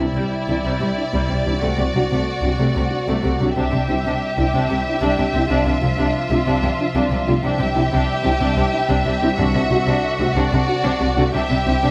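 A steady 12/8 pulse at 123 BPM, counted in dotted quarters, carries this heroic, triumphant cinematic passage in C major, cut from a longer piece and built as a steady build-up across its 11.9 seconds. Lush, vibrato-rich violins sing the melody high between D5 and E5 with a soft attack, while a second violin line moves smoothly below between E4 and G4. A distant chamber viola section fills the middle, and a dark, tight French horn section holds sustained chords in the background. A mellow, ringing concert harp spreads fingerpicked arpeggios from C3 to E5, and the bass rests on a deep, woody double bass section on C2 beneath a smooth cello section on C3. Very quiet timpani with soft mallets and calf heads add a round stroke at 0.0 seconds and again at 9.4 seconds, as the harmony keeps returning to Cadd9 between D/C and Dmadd9/C. A moderate recital hall reverb surrounds close, detailed microphones.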